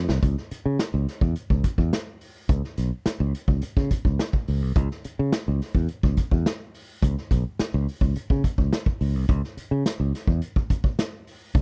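A straight 4/4 funk groove at 106 BPM struts with energetic drive in this short cut from a longer piece, opening on a drum fill as a bright, growly fingered electric bass sits up front and a vintage acoustic kit with a punchy kick, medium-tuned snare, hi-hat and a rolled-off top breathes in a small, pumping room, all with little reverb.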